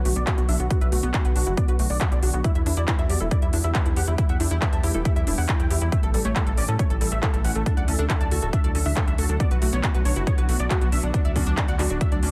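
A dry, up-front mix opens this driving, soaring uplifting trance passage, cut from a longer piece, where an overdriven, punchy electronic kick and a layered dance kit of handclaps and crisp hi-hats push a tight sawtooth sequencer bass that pumps under sidechain. Above them, a huge, detuned supersaw lead carries the melody through low-pass filtering and digital delay, while a round analog pluck with chorus spins bright arpeggios. In the background, a shimmering, ethereal pad holds sustained chords with its own reverb and a filter sweep running throughout, over a progression moving from Bm through Em, A and D.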